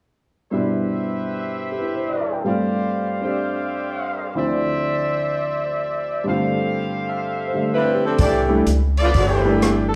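A swinging 4/4 pulse at 125 BPM drives this short, energetic big band cut in C major, lifted from a longer piece. A woody upright piano plays accompaniment from 0.5 s, moving through Cmaj7/G, G7sus4, Dm9 and G9sus4, while a present trumpet section punches out stabs with light vibrato. The saxophone section takes up the melody at 7.7 s, its smooth top and gentle vibrato sitting up front. At 8.2 s the harmony lands on C69 as a pizzicato upright bass with steel strings joins alongside an open jazz kit, heard on hi-hat, boomy kick and rim click with a dark, rolled-off top. A large studio reverb places the ensemble further back in the room, giving the swinging band a spacious, lively finish.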